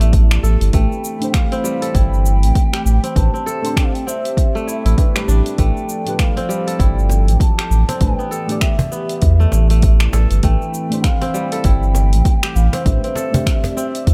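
A round, sine-like sub bass sits up front with tube saturation, giving this hypnotic, earthy organic downtempo excerpt its deep foundation at 99 BPM in A minor, with a swung 16th-note feel. Above it, a bright, fingerpicked kora rings out crisp arpeggios with delay, while a distant bass bansuri carries the melody with a pure bamboo tone, expressive vibrato and its own delay. In the background, a soft chord stab blending triangle, sawtooth, sine and square waves decays under chorus, phaser, delay and sidechain pumping, and a smooth analog pad with a slow attack and long release holds sustained chords with chorus and pumping of its own. A punchy electronic kick drives the groove from 0.1 seconds alongside a deep house kit of finger snaps, dark hi-hats and shaker, and a snappy acoustic cajon joins at 6.4 seconds. The harmony moves from Em7/A through Am7, Cmaj9/A and F69/A, then returns to Em7/A and Cmaj9/A, all set in a digital ambience.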